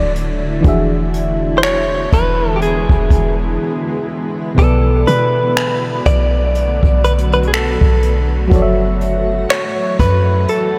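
A clean, direct-recorded electric guitar carries the melody up front with a touch of analog delay in this late-night, longing contemporary R&B piece at 61 BPM in B minor, with a swung 16th-note feel. Beneath it, a deep, sine-toned 808-style bass, a warbling vintage FM electric piano with chorus, and a cloudy, evolving granular pad move through D, E7, Bm7 and F#m7, while a brushed jazz kit with finger snaps, hi-hat and a boomy kick enters at 0.2 seconds. A break falls between 3.6 and 4.6 seconds, and the whole dreamy mix is soaked in a huge ambient reverb.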